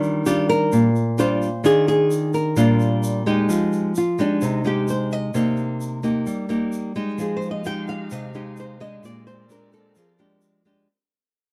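This sophisticated, relaxed bossa nova excerpt in Eb major at 130 BPM opens with a fingerpicked nylon-string guitar laying down chords like Ebmaj9 and Fm9 over a grainy, bright tube shaker, while a second fingerpicked nylon-string guitar, small and up front with audible finger squeak, carries the melody from 0.3 seconds and takes a solo from 3.5 seconds as the music fades out. At 7.2 seconds a dark, veiled string section, muted and bowed with soft attacks and vibrato, slips in the background beneath the Fm9 and Bb13 changes. Light reverb surrounds the dark, warm production.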